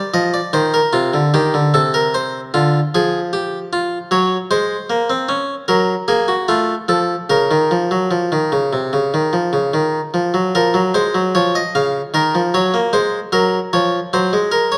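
A straight, even 4/4 pulse drives this lively, elegant classical piece, a baroque-style two-part invention cut from a longer work. A single Italian-style harpsichord plays throughout, spanning C3 to F5 with a plucked, nasal, bright tone that sits up front in the mix. The harmony shifts through passing and diminished colors before settling into a minor-key shade at 4.1 seconds, and a new passage begins at 10.5 seconds that circles back through related minor chords. A moderate scoring-stage reverb with a 1.6-second tail gives the room some depth, while the overall production leans dark. The result pairs the instrument's thin, bright tone with an elegant, lively mood.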